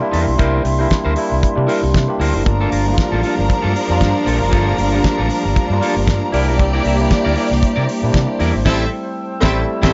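A barky, lightly overdriven tine electric piano, a twangy electric guitar at the edge of break-up and a distant, hollow flute section holding mellow chords in the background open this danceable, glamorous disco excerpt at 116 BPM with a swung sixteenth feel, moving from C7 to Gm9. A punchy, overdriven fingered bass and a dry, damped 70s drum kit with a fat snare and tight kick sit up front, and at 2.5 seconds a lush, focused studio string section enters with a clear, bowed second line. The harmony passes through C9 to Am7, where the band hits an accent from 8.7 seconds, all in a small room with light reverb.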